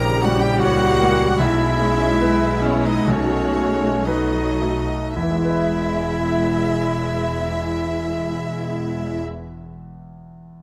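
This lush, passionate classical passage in E major, cut from a longer piece, opens with the whole ensemble at once. A clear concert grand piano with deep bass carries the melody, and a warm symphonic violin section also plays the melody in the background. A bright solo clarinet and a close, even chamber violin section share a second line, while a distant, expressive viola section supplies accompaniment and a very quiet, mellow French horn section holds sustained chords. Beneath them, symphonic cello and double bass sections anchor the bass with smooth, vibrato-laden bowing. In 4/4 with a rubato feel between 52 and 80 BPM, the music slows through its opening section as the harmony moves from A#dim7 through E/B and B9 to arrive on E at 5.2 seconds. The strings, clarinet and horns stop at 9.2 seconds, leaving the polished piano alone until 10.6 seconds, heard through light reverb and close, detailed microphones.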